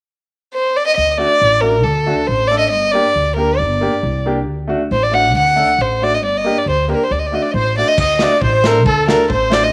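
Festive yet soulful, this klezmer excerpt in D phrygian dominant moves at 137 BPM in a straight 2/4, led by an up-front bowed violin with a dark, boxy tone and light vibrato from 0.5 seconds, joined by plucked upright bass, a brilliant, long-sustaining upright piano, a reedy accordion second line arriving at 7.5 seconds, and a gritty, saturated breakbeat kit with tight kick and dark cymbals kicking in at 8.0 seconds, all set in a moderate echo-chamber reverb as the chords shift between D and Gm.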